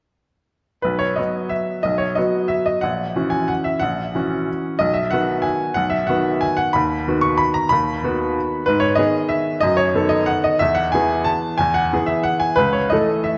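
Swaying in three with uneven, rubato beats, this elegant classical piano waltz unfolds from 0.8 seconds as a sparkling solo on a bright upright piano, its woody, intimate tone placed up front with audible action noise and long sustain. The harmony moves from B major through its dominant before turning toward E major at 8.7 seconds, the piano ranging from deep bass up to its high register. Moderate concert hall reverb surrounds the polished playing in this fragment cut from a longer piece.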